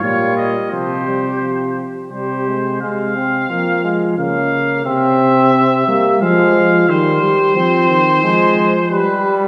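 Heard from further back in the room through a wet scoring-stage reverb, this short cut from a longer imitative canzona for brass ensemble moves at a driving, serious 88 BPM in 3/4, in F minor. A clear trumpet carries the melody up front with light vibrato, a mellow flugelhorn adds a second line in the background until 2.8 seconds, and a distant, roomy trombone supplies accompaniment above a present, warm tuba bass with vibrato. The harmony moves from Bbm through Csus4 and Fm/C, and the passage ends on G.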